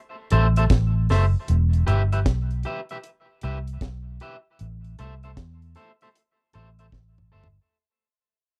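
A dark, round, foam-muted electric bass sits up front in this short roots reggae excerpt, its amped, punchy tone carrying a laid-back yet serious mood over a loose swing. The deep reggae drum kit shares the foreground with a tight kick, a high-tuned snare, hi-hat and toms, and a drum fill closes things out from 6.9 seconds. Further back, a picked electric guitar at the edge of break-up adds a twangy accompaniment coloured by tape echo. The harmony moves from A minor to E minor and back to A minor, and the whole passage fades out across its length, having been cut from a longer piece. The sound is dry and close, in the manner of a 1970s studio recording with little reverb.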